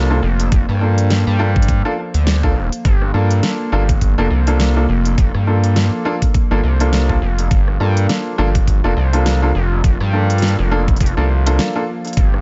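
A gritty, saturated sawtooth synth bass sits up front in this funky glitch hop excerpt at 103 BPM in G minor, joined by a knocking electronic kick, a pop kit with a fat snare, rim click and crisp hats in studio reverb, clear, worn baby grand piano stabs through analog delay that stop at 11.8 seconds, and a warbling lo-fi tape-like pad holding a Gm9 chord in the background with chorus, phaser and sidechain pumping, set in an echo-heavy digital ambience with a short break at 11.6 seconds.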